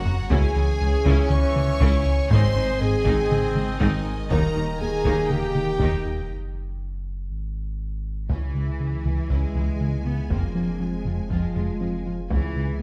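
A French horn section holds sustained chords over a thick, saturated sub bass and a dark, wave-folded synth bass riff in this tense, brooding hybrid orchestral and electronic film cue, cut from a longer piece. Bright trombones, taiko drums with heavy sticks (opening on a short fill), and a very quiet, harp-like synth pluck playing ringing arpeggios sit behind them. Bowed violins carry a lush, vibrato melody above a second violin line, violas, distant cellos and faint double basses, all softened by moderate scoring-stage reverb, with a break from 6.3 to 8.3 seconds before a new section.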